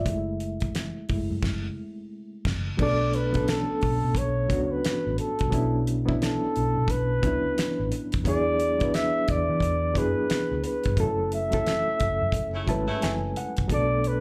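R&B and neo-soul at 88 BPM in B dorian with a swung 16th feel and a late-night, introspective mood, this live club recording opens on a reedy, worn reed electric piano with overdrive, fast tremolo and slapback echo, joined by a round, foam-muted vintage bass and a dry, damped 70s drum kit with a fat snare, dark cymbals and finger snaps, before a breathy, whispered flugelhorn with scooped notes takes the melody at 2.8 seconds over Bm9, E9 and F#m7, and a tight, bright saxophone section punches in with brief stabs at 12.5 seconds.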